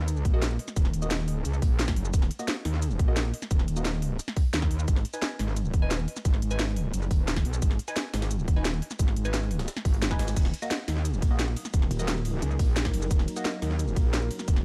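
A distorted, metallic wobble bass opens this tense, mechanical slice of dark technical drum and bass in Eb minor at 175 BPM, joined almost at once by a tight, up-front electronic kick, a layered drum and bass kit with cracking snare and crisp hats, and a very quiet, gritty, pitched-up jungle sampler kit. Muted, detuned dub chord stabs with a moving notch filter, phaser and digital delay flicker over the Ebm to Abm and back to Ebm changes. At 11.6 seconds a deep, moody sawtooth pad pumps in the background, and at 11.9 seconds a brief, bright burst of a second wobble bass cuts through.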